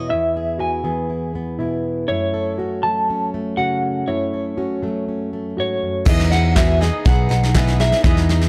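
A slightly broken-up, lo-fi electric guitar carries the melody through tremolo and analog delay in this hopeful, anthemic indie folk excerpt in E major at 121 BPM, over a full-bodied fingerpicked acoustic guitar and an intimate upright piano with audible action noise, until at 6.1 seconds the acoustic guitar drops out as a shimmering, boxy twelve-string, a punchy amped electric bass and a soft brush drum kit with dark cymbals enter, joined briefly at 6.6 seconds by crisp group handclaps in the background, all in a dark, dry production.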